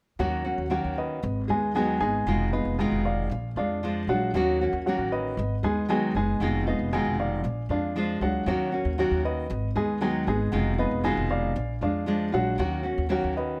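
A dark baby grand piano with a mellow, intimate tone and audible action noise plays arpeggios through tape echo, sitting up front alongside the rest of the trio in this nostalgic Latin excerpt in Eb minor. It moves at 116 BPM in a straight 4/4, cycling through a progression of Ebm7, Abm7, Fm7b5 and Bb7 that returns to Ebm7 at 12.6 seconds. A fingerpicked nylon-string guitar with fresh strings and a classical touch provides accompaniment, its tone warm and acoustic. Underneath, a pizzicato upright bass on gut strings gives a woody, thumpy low end. All three parts play together from 0.2 to 13.6 seconds, captured with close, detailed microphones and light reverb that keep the short-sustaining piano and the other instruments natural and present.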